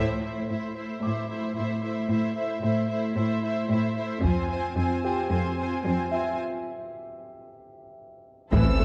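A dark, warm scoring-stage sound frames this tense, futuristic hybrid orchestral and electronic film cue, where up-front viola and cello sections and a distant violin section play lush, vibrato-rich strings over Am and Fm, a grand piano with tape echo adds texture from 1.0 s, heavy-stick taiko drums strike at 4.2 s, and at 8.5 s an electronic impact arrives with a high violin melody, clear trombone chords, a very quiet bowed double bass section and a very quiet, punchy, wave-folded analog bass riff.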